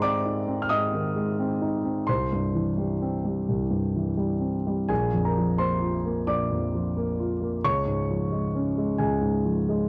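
A warm concert grand piano plays alone throughout this hopeful, peaceful fragment of neoclassical minimalist music, its deep bass, short sustain and up-front placement heard through cassette-tape coloring and light reverb in a home recording, as the rubato phrasing moves through Ab, C, Bb and Db chords before the longer piece cuts off at 9.9 seconds.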